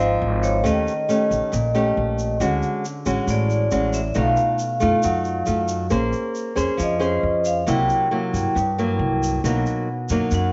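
A relaxed, romantic bossa nova excerpt opens with a ringing, metallic vibraphone solo played with medium hard mallets and a slow motor vibrato, over up-front fingerpicked nylon-string guitar and a woody, thumpy pizzicato upright bass on gut strings, joined at 0.4 seconds by a grainy, close tube shaker, as the harmony drifts through lush chords from Dbmaj9 to Cbmaj7 in a small room with an echo-chamber reverb and a soft, rounded top end.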